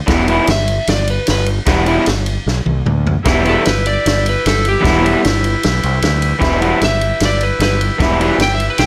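Garage rock with a raw, swaggering mood, this short excerpt drives along at 152 BPM in a straight 4/4, sitting on E minor throughout. An overdriven, lo-fi guitar riff leads from the start, double-tracked, picked and up front, while a growling fingered bass with overdrive and tube saturation adds a bright, amped edge underneath. A vintage acoustic drum kit with a tight kick, medium-tuned snare, dark cymbals and a rolled-off top plays kick, snare, ride cymbal and toms, breaking into a fill from 2.5 to 3.2 seconds. An electric slide guitar carries the melody from 0.5 seconds, its tone dark and slightly broken-up. At 3.2 seconds a buzzy combo organ enters with clean sustained chords bathed in spring reverb, and a light reverb colours the whole mix.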